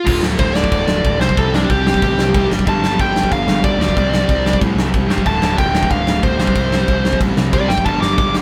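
A bluesy, distorted lead guitar and an overdriven, double-tracked rhythm guitar start together at the opening of this short punk rock cut, driven at 185 BPM in a straight 4/4. The lead sits up front, soloing in a high register throughout, while the rhythm guitar grinds out a low riff in the background. A growly, fuzzed bass, picked and bright, joins at 0.1 s along with a big acoustic drum kit: bright crash cymbals, a punchy kick and a medium-tuned snare, placed up front in a large, natural-sounding room. The chords move from D5 through C5 and G5, touch Dm, then return to C5 and G5. The whole thing sounds like a band playing live together in one room under light reverb, urgent and raw in mood.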